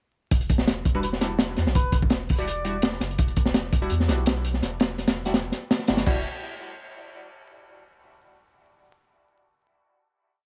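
Atmospheric and frenetic, this short drum and bass and jungle piece in E minor at 167 BPM drives a heavily chopped, gritty breakbeat kit with dark cymbals, a high-tuned snare and a punchy kick up front on cassette tape, over long gliding notes from a deep, round dub sub bass, while muted, phaser-treated chord stabs echo sparsely on an Em9 from 0.9 seconds, a reedy, breathy melodica drifts in the background with short answering phrases in dub echo until 2.9 seconds, and a final chord rings out from 6.1 seconds amid small-room ambience and vinyl crackle.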